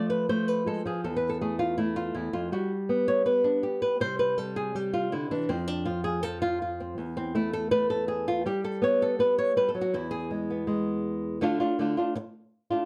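Flamenco at 162 BPM in 4/4 with a straight feel, this short, fiery excerpt is cut from a longer piece and carries a passionate intensity from its first note. A lone flamenco guitar carries everything as a fingerpicked solo from 0.0 to 12.9 seconds, spanning E2 to C#5 with a warm, boxy acoustic tone, sitting up front where the squeak of fingers on nylon strings comes through clearly. The harmony moves from F through Esus4, G and C, then returns through F5, Esus4 and G before landing on E at 9.9 seconds. A brief closing passage begins at 11.4 seconds on D minor, just as the nylon-string solo line gives way. Moderate studio reverb lends a sense of room around the guitar, and the production leans dark and warm.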